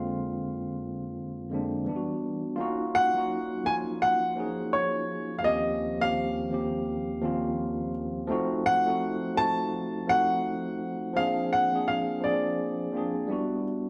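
A relaxed 84 BPM pulse in 4/4 carries a 60% swing on the sixteenths, giving this introspective, smooth R&B passage in Eb dorian an easy, unhurried sway. A tine electric piano provides the accompaniment from 0.0 to 13.9 seconds, spanning Eb2 to Ab4 with a clean tone heard through its built-in speakers and sitting up front. Above it, a warm grand piano carries the melody between Db5 and A5, intimate and natural in character, with audible action noise and a short sustain that keeps each note close and present. After a brief opening section, the second section begins at 2.6 seconds, moving through lush extended harmonies such as Ebm9, Eb13 and F7b9 before circling back to Bb9/F and Em9. The duo plays live in one room, wrapped in a wet stone room reverb, and the passage is cut from a longer piece, with the melody stopping at 13.6 seconds.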